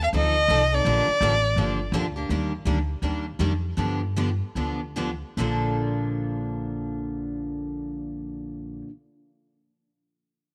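A bowed violin with vibrato and portamento sings a short, expressive melody up front until 1.9 seconds, over a thumpy, dark pizzicato upright bass on gut strings in this lively, charming excerpt of acoustic string swing in Bb major. Two picked steel-string acoustic guitars accompany throughout, one bright with fresh strings and audible finger squeak, the other full-bodied and woody with older strings, moving from F7 and Bb6 through Ebmaj7 and G7 to Bbmaj7. The swung 4/4 groove runs between 140 and 166 BPM and slows from 2.3 to 5.4 seconds, set in light reverb with a studio ambience.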